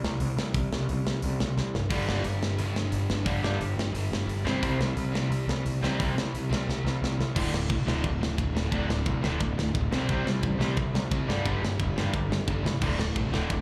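A straight 4/4 pulse at 176 BPM drives this energetic, upbeat punk rock excerpt, where a tight, up-front metal drum kit with a medium-tuned snare and a punchy, fuzzed-out picked bass open together, then a drum fill at 1.6 seconds ushers in three crunchy, overdriven picked guitars sitting in the background on a riff over G5, C5 and D5 power chords, two of them bright and one warm and double-tracked, with slapback echo touching the warm one and one of the bright ones, all captured like a live club gig heard through the venue's PA with little reverb.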